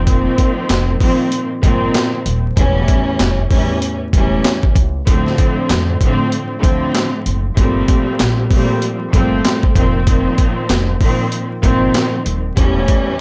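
A loping 4/4 groove with a 60% swing on the sixteenths drives this moody, gritty boom-bap hip-hop excerpt, tuned slightly below standard pitch. The sampler-style drum kit sits up front with a thumpy kick, a high-tuned snare, handclaps and hi-hat, all compressed and re-recorded in a small room for a grainy punch. Beneath it, a pizzicato upright bass with steel strings adds a woody, dark, growly low end. An expressive studio string section, also placed up front, plays lush bowed harmony with vibrato, portamento and a smooth top, moving through F7sus4, A7/E, Dm7 and Gm11 before circling back. Vinyl crackle and little reverb give the whole cut a dry, dusty, close-up feel, with the strings carrying through to the end at 13.2 seconds.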